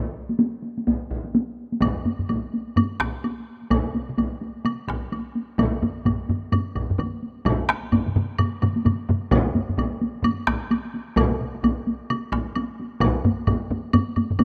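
Ceremonial and powerful, this Japanese traditional taiko ensemble passage is cut from a longer piece and moves in 4/4 with a swung sixteenth-note feel, its pace quickening throughout. A taiko group struck with heavy sticks opens at 0.3 s, sitting up front in a small room, and a second heavy-stick group soon joins, close and dry. At 1.8 s the music moves into a new section as a third taiko group with hard sticks enters in the background alongside a woody, dry woodblock. From 3.7 s a fourth hard-stick taiko group adds a distant, large-room sound while still sitting up front. The mix is rough, like a home demo, with light small-room reverb.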